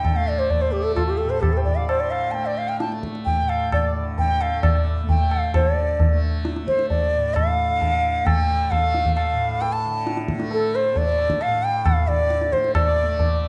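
At the outset, a shimmering, buzzing tanpura drone, an up-front bansuri, ringing high-tuned tabla and a mellow pedal harmonium all sound together in this meditative, solemn Hindustani classical excerpt in raga Malkauns on A. The tempo begins around 132 BPM in a straight 4/4 and gradually speeds up throughout. The airy bamboo bansuri carries the melody with a reedy, tongued attack and vibrato, while the harmonium breathes a smooth second line in the background until about 5.6 seconds, returning only briefly at 12.9 seconds. The softly plucked tanpura holds the low drone beneath, and the tabla sits forward in a live room. A moderate recital-hall reverb and a dark overall production give the music a calm, enclosed glow.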